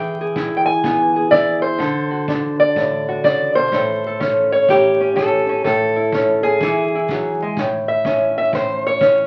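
A dark, boxy fingerpicked parlour steel-string guitar carries the melody up front in this laid-back, rollicking swung acoustic country blues fragment, backed by a distant, roomy kick drum with brushes and a rolled-off top, all heard through a modest club reverb and the crackle of a very old 78 rpm record, with the guitar taking a solo from 7.6 s.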